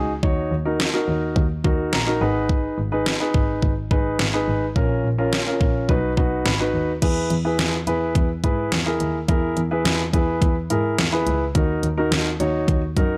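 A dark, mellow baby grand piano and a smooth, bowed double bass with vibrato and tube saturation open this driving, melancholic synth-pop excerpt in Eb minor at 106 BPM, with the piano placed up front and adding fills at 1.6 and 5.9 seconds. An electronic, layered pop drum kit joins almost at once, also up front, overdriven and re-recorded in a small room, with a knocking kick, a deep snare, hi-hat and crash cymbal. At 7.0 seconds the harmony shifts to E before returning to Eb minor, all in a dry, gritty hardware recording with digital ambience.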